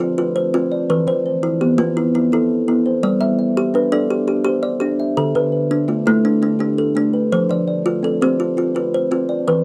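A rolling 12/8 pulse at 112 BPM in dotted quarters drives this hypnotic, rippling southern African traditional piece, cut from a longer mbira-style interlocking cycle that moves through F5, Em, G, Dm and F. Two kalimbas play arpeggios throughout the 9.6 seconds. The first is woody and hollow-bodied, with a short, mid-forward thumbnail pluck, while the second is softer and mellower, a solid-board fingertip pluck that rings out in a boxy small-room tone. Both sit up front in a dry, close 1970s-style studio sound.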